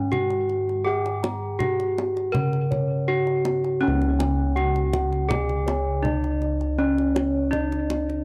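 Javanese gamelan with a shimmering, ceremonial mood at 81 BPM in 4/4 and C# pelog barang, this fragment cut from a longer piece sets a bright, ringing bronze metallophone melody struck with a horn mallet and touched by analog delay up front, over round, beating bossed-gong arpeggios, a close-miked, full bossed-gong bass played with padded beaters and colored by tube saturation, and tight, hard-handed kendang from a small room, while a second, mellow metallophone with padded disc mallets softly adds arpeggios in the background from 3.8 seconds, all captured in a dry, gritty hardware recording with transformer saturation and light reverb.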